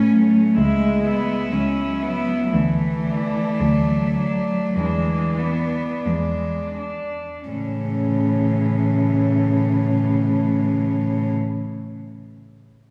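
Lyrical and tender, this classical excerpt for cello ensemble moves in a rubato 4/4 at 40-68 BPM in A major, slowing down over its first 7.5 seconds as the harmony passes from A through C#m, D and E7 before returning to A. A rich, pure cello carries the floating, distant melody above a dark, woody second line with vibrato, while two intimate, close cellos with light vibrato and airy bowing fill in the accompaniment and the up-front bass, all four bowed sul tasto. A church reverb lingers around the ensemble, lending the whole passage a spacious, resonant glow.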